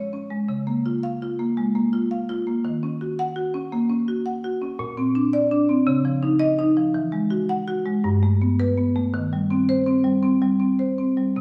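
Set in the echo of a stone room with a small-room ambience, this flowing contemporary classical piece for solo marimba moves at 111 BPM in a rubato 4/4, its woody, bright padauk bars struck with medium hard mallets sounding percussive and up front as the harmony drifts from Db6 through Ebm7 and a chain of add9 chords to settle on Eb6 at 9.1 seconds.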